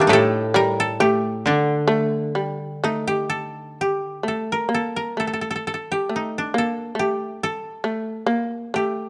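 In a free, rubato 2/4 that hovers around 63-69 BPM, this brief excerpt from a longer piece of Japanese chamber music unfolds with a calm, austere air. Two kotos plucked with fingerpicks sit up front: one carries the woody, dry melody throughout, while a brighter koto supplies a low accompaniment that stops at 4.2 seconds. A fretless shamisen adds a plectrum-plucked second line with a powerful, buzzing, percussive bite, all captured by close, detailed microphones in light reverb as the music moves into a new section at 3.8 seconds.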